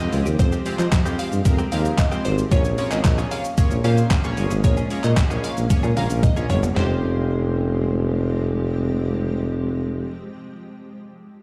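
A crisp, overdriven 8-bit drum machine with a thumpy kick and handclaps drives this energetic, bittersweet dance-pop excerpt in F minor at 113 BPM, playing a fill from 5.7 s before dropping out at 6.9 s, while a punchy, close-miked tuba with vibrato pumps out the bass beneath chorused retro synth keys, a cloudy granular pad in the background, a very quiet clean electric guitar riff and a glassy wavetable pluck melody with tape echo, all over chords moving from Fmadd9 to Bbm7 and back in a big, reverberant room.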